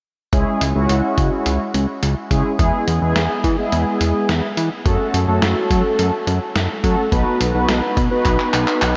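A straight 4/4 pulse at 106 BPM comes from a lo-fi, sampler-style drum kit: a thumpy kick, a medium-tuned snare, hi-hat and handclaps, all compressed, pitched down and muffled, with the sound of being re-recorded in a large room. This short synth-pop fragment, cut from a longer piece, sits in C# minor with tuning at A4 = 438 Hz. Its melancholic, nocturnal mood moves through C#m, E, F#m and B. A fat analog bass sits up front with a thick, detuned blend of sawtooth and triangle waves, given a wave-folded edge, a fast attack and long sustain. Above it, mellow synth brass plays a round, dark accompaniment with a brassy sawtooth core, shimmering with chorus and vibrato. The whole dreamy mix is soaked in a huge ambient reverb with a 7.5-second tail, and a drum fill at 8.3 s closes the passage.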